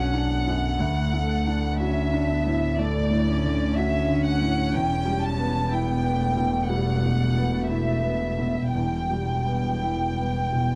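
A short neoclassical passage for piano and strings opens with all four parts sounding together: a chamber violin section carrying the melody up front, a cello on a second line in the background, a felt-muted upright piano, and a bowed double bass underneath. The mood is longing and melancholic, with a slow, rubato pulse in 4/4 that moves from Bm7 to D and then settles on Em at 4.7 seconds. The violins play with vibrato, soft attacks and a sul tasto veil, sounding close and intimate, while the single cellist adds light vibrato and an airy bow. The piano, the loudest part, has a mellow, thin felt tone, and the double bass sounds rich, pure and floating at a distance. Light reverb and a dark, warm production shape the sound, though lossy compression artefacts are audible in this fragment cut from a longer piece.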